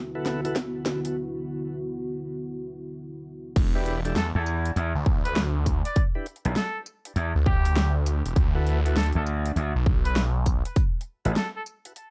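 Swaggering and funky, this glitch hop excerpt moves at 100 BPM in E minor with a swung 4/4 feel, opening on a build-up where a dark, moody analog pad with chorus, 12-bit grit and sidechain pumping holds D69 chords under a filter sweep, while tonewheel organ stabs with key click, slow rotary and digital delay, a dubstep kit of huge snare, metallic hats, tambourine and crash, and a punchy, tape-toned electronic kick with a high-pass filter enter within the first second, as a drum fill gives way to a break. At 3.6 seconds the drop lands on Em7, and the pad stops as a swirling, thick phased saw bass and an overdriven, bright slap bass take the low end up front. A clear trumpet with vibrato and digital delay carries a jazz-style solo melody from 4.2 seconds, and the harmony returns to D69 at 8.4 seconds, all in a dry, close sound.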